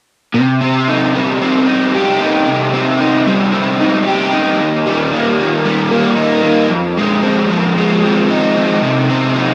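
A straight 4/4 pulse at 113 BPM drives this wistful, dreamy rock fragment, cut from a longer piece, in which a lone raw garage electric guitar, picked and double-tracked up front with overdrive, analog chorus and tape echo, plays from 0.3 to 9.5 seconds through Cm, Eb, Fm7 and back to Cm, tuned to A4 = 439 Hz and set in a wet small room as a home cassette recording.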